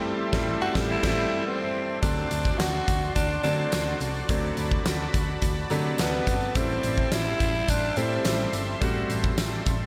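Urgent and nostalgic, this 1980s-style pop excerpt moves at 106 BPM in a straight 4/4, set in a dreamy mix soaked in lush hall reverb. A clear grand piano and a thick, warbling sawtooth pad with chorus open on Am7 with a band accent. At 0.3 seconds they are joined by a huge arena drum kit with punchy kick, fat snare and bright cymbals, along with a dark, round hollow-body electric bass, before the harmony shifts to D7. Up front, a growling, breathy tenor saxophone carries the melody with light vibrato and a diffuse ambient delay, while a very quiet, jingly tambourine enters at 2.0 seconds.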